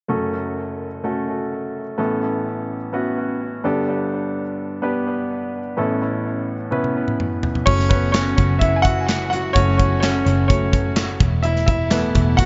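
A clear, up-front baby grand piano drives this dramatic, dub-echoed pop excerpt through F#m, Aadd9 and Gadd9 chords. A polished studio drum kit with bright cymbals, a tight kick and handclaps enters with a fill at 6.7 seconds. At 7.7 seconds the piano moves into a solo, backed by a dark, round, foam-muted electric bass and a very quiet, lush bowed string section, all within an echo-heavy mix with light reverb.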